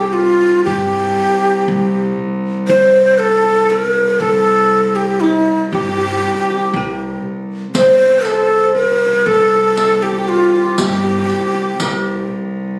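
A breathy, hollow end-blown ney carries the melody up front over a fingerpicked, bright-edged qanun second line in the background, a woody, thumpy pizzicato upright bass and a rich bowed cello drone on C2 in this festive, stately Arabic maqam rast passage on C at 118 BPM in 10/8, with the ney's crisp attack and vibrato and the cello's expressive portamento standing out before a distant, jingling riq enters at 7.7 s, heard in a dry phone recording made in the room.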